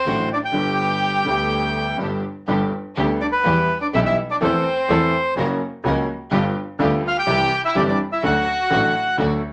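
A reedy, up-front bandoneon opens this passionate, playful tango fragment, carrying the melody while a chamber violin section plays a close, intimate second line beneath it, bowed sul tasto with light vibrato. A moment later the rest of the ensemble arrives: a grand piano with deep bass, a boxy tone and long sustain plays the accompaniment, a bowed double bass sounds biting and earthy, and a lush symphonic string section places smooth stabs in the background. The feel is rubato, giving the phrasing a loose, expressive pull. After an opening passage, a new section begins at 2.5 s, with the harmony moving through minor chords and F# toward a dominant seventh and then C before settling on D. The whole piece sits in a wet studio reverb, and it is cut from a longer piece, stopping at 9.4 s.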